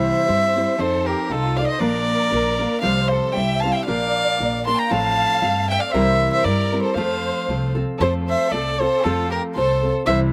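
Romantic and festive, this swung mariachi excerpt in 2/4 sets a close, reedy solo violin with a nasal gut-string tone on the melody, a lush, distant violin section with vibrato on a second line, both touched with slapback echo like the bright fingerpicked nylon-string guitar, and a woody pizzicato upright bass underneath, all heard dry outdoors with little reverb.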